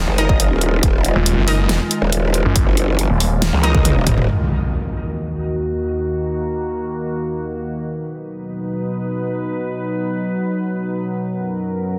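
A dense, heavily limited modern master with light digital ambience frames this heavy, chaotic wobble dubstep cut, moving at 139 BPM in a half-time 4/4 feel in Eb minor. It opens on a drop where a snarling, detuned sawtooth bass and a wobbling, formant-filtered growl bass pile on top of a punchy layered kick, a big-room kit with a huge snare and toms, and bold, bright orchestra-hit-like stabs trailing dub echo, all over an evolving, warbling wavetable pad with chorus and sidechain pumping. A drum fill at 3.4 s leads into an electronic impact at 4.3 s, after which the morphing pad carries on under a filter sweep through Ebm, B and Gb chords until 12.0 s.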